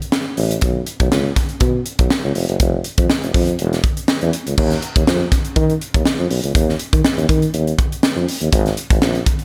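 A lightly reverberant studio sound frames this short fragment of polished 1980s jazz-funk pop, with an urban, bittersweet mood and a gentle swing on the sixteenth notes. A crisp, airy acoustic fusion drum kit sits up front, its high-tuned snare and tight kick joined by hi-hat and crash cymbal from the very start. A tuba takes the bass role as a pop-style solo voice, entering at 0.4 seconds with a warm, roomy tone and vibrato, moving between its deep low register and a higher middle range. The piece shifts into a second section at 4.6 seconds, carried by the same pairing of drums and tuba. The tuba drops out at 9.2 seconds, just before the kit finishes the passage.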